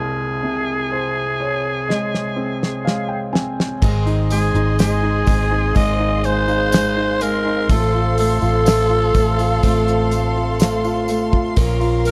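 A raspy, growling alto saxophone carries the melody up front in this longing, melancholic pop ballad, opening over a soft, felt-muted upright piano that plays a fill before a damped 70s drum kit, with its fat snare and dark cymbals, joins at 1.9 s with a fill of its own. At 3.8 s the arrangement fills out: a round, punchy muted electric bass, lush bowed strings, a bright picked steel-string acoustic guitar playing arpeggios with audible finger squeak, and a jingly tambourine tucked in the background. Small room ambience and a dark, warm production frame this cut from a longer piece.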